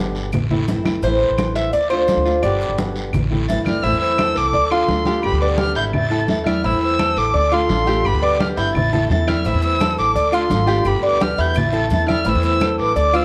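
A bright, metallic Cuban tres leads this sultry, nostalgic son and guajira excerpt in A minor at 171 BPM, its picked double-string arpeggios carrying a solo over nylon-string guitar, woody pizzicato upright bass up front, thick-skinned congas, raspy guiro, background claves and very quiet maracas. At 3.5 seconds an expressive bowed violin enters up front with vibrato and portamento, joined by a distant, hollow baroque flute on a second line, as the music cycles through Am, Dm and G. A large studio reverb and worn, warbling cassette tape with pitch drift give the recording its faded, old-time character.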